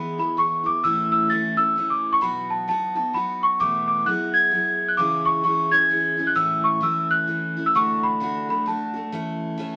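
A moderately roomy studio ambience frames this brief, gentle fragment of pastoral acoustic folk in a swung 3/4. Up front, a large celesta carries the melody with a sweet, bell-like ringing tone, while a picked dreadnought steel-string guitar supplies bright, full-bodied accompaniment with audible finger squeak. Both parts play throughout the 9.8 seconds, moving through C#m7, A, B, Esus4, Eadd9, C#m, A and D before settling on A/E.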